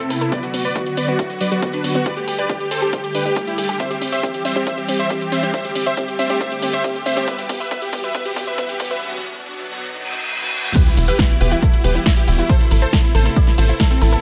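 Emotional and driving, this uplifting trance excerpt builds through a filter sweep on huge, detuned supersaw chords carrying the melody, with a very quiet plucky unison lead, a lush phased supersaw pad, a round analog pluck arpeggio with 12-bit grit and delay, an overdriven techno kit with a punchy snare and a drum fill, and an up-front tape-warm kick, while a riser and reverse cymbal in the background lead into the drop at 10.8 seconds, where a close, grainy tube shaker and a dark, saturated, sidechain-pumped sequencer bass arrive.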